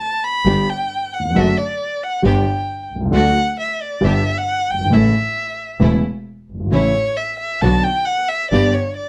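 A lone bowed violin opens this short tango fragment at 0.0 s, dark and up front, its expressive line shaded with vibrato and portamento and a smooth top, carrying a solo that runs the full 9.1 seconds. At 0.5 s the rest of the ensemble arrives together: a mellow, vintage-sounding concert grand supplies the accompaniment with deep bass and short sustain, a single bowed double bass adds a clear, focused low line with vibrato, and a distant symphonic string section places rich, even stabs touched by light vibrato and a slapback echo. The tempo sits at 134 BPM in 4/4, yet the feel is rubato, giving the passage a sultry, tense pull. Harmony moves from G through D/F#, D and A before darkening to Bm and settling back on G. The sound is close and detailed with little room reverb, keeping the violin and piano intimate while the strings hang further back.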